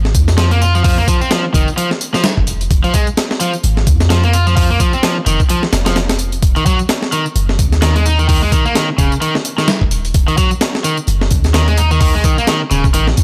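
A swung breakbeat groove at 129 BPM drives this energetic, funky excerpt in F minor pentatonic, anchored by a gritty, compressed sampler-style drum kit up front with a thumpy kick, high-tuned snare and hi-hat, while a layered, tape-warm electronic tambourine sits in the background. Beneath it, a deep, boomy 808-style bass with a dark, decaying sine tone, a noise layer and tube saturation starts at 0.0 s. From 0.4 s, a bright, overdriven stack guitar plays a picked riff up front through digital delay, and the mix sits in a digital ambience.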